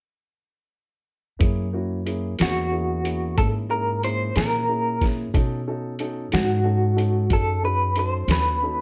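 A slow blues in 12/8 at 61 BPM, this short excerpt settles into a straight, laid-back sway in F# mixolydian, moving from F#7 to B7 at 5.3 seconds. From 1.4 seconds a lo-fi sampler-style drum kit sets the pulse with hi-hat, a thumpy kick and a medium-tuned snare, its compressed, pitched-down, muffled sound carrying a tape-like warmth and the air of a large room. Alongside it, an up-front pizzicato upright bass plays woody, dark lines between D#2 and B2, while a mellow, boxy upright piano sits quietly underneath as accompaniment. At 2.4 seconds an electric guitar through a small old amp takes the melody between F#4 and B#4, its picked tone slightly broken-up and lo-fi, shimmering with tremolo. The mix is dry and close, giving the soulful mood an intimate feel.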